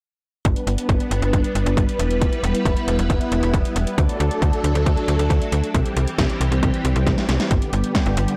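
A short synth-pop excerpt in G major opens at 0.5 seconds with all three parts arriving together at a brisk 136 BPM in straight 4/4, carrying a bright, nostalgic mood. A shimmering vintage string machine holds soft-attacked sustained chords in the violin register, its sawtooth tone thickened by ensemble chorus and a moving notch. Underneath, a slap-like FM bass gives snappy, metallic-edged notes with a fast attack and quick decay, roughened by transformer saturation. The electronic pop drum kit sits up front with a punchy kick, fat snare and metallic hats, layered and overdriven as if re-recorded in a small room, and it plays a fill from 7.1 to 7.5 seconds. The chords move from G to Em, D and C before landing back on G at 7.5 seconds, all inside a blown-out, overdriven recording with light reverb.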